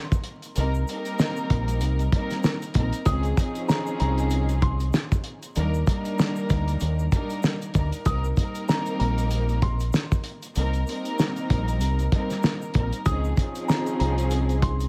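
Reflective and gritty, this boom-bap hip-hop excerpt moves at 96 BPM in C minor with a swung sixteenth-note feel, cycling through Cm7, Dbmaj9 and Ebmaj7 chords. A dark studio string section opens the track at 0.0 seconds, bowed sul tasto with light vibrato and a soft attack, its smooth top filtered and softened by a cassette-tape character. The cloth-damped drum kit arrives almost at once, muffled and saturated, with a fat snare, a tight kick and hi-hat sitting up front in a small room, while a grainy, bright egg shaker ticks away in the background. A deep dub fingered electric bass joins at 0.6 seconds, round and punchy, played direct and amped. From 3.1 seconds a dark, woody upright piano carries the melody high in its register, its mellow, vintage tone filtered and trailed by tape echo, all over a layer of vinyl crackle and small room ambience.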